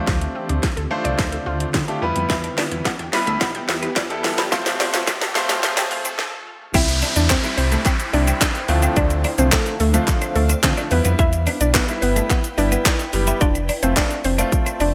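Confident and driving, this dance-pop excerpt has a bright 1980s-style digital sheen: a punchy house drum kit with gated reverb and a deep sine sub bass drive beneath a clear, intimate grand piano whose pumping matches the bass, joined by a cloudy granular pad, a very quiet sawtooth unison pluck in arpeggios, a twangy twelve-string electric guitar riff in the background and a riser and downlifter, and after a build-up and a brief stop at 6.2 seconds, the drop at 6.7 seconds brings in a woody, mallet-like synth pluck melody with chorus and delay.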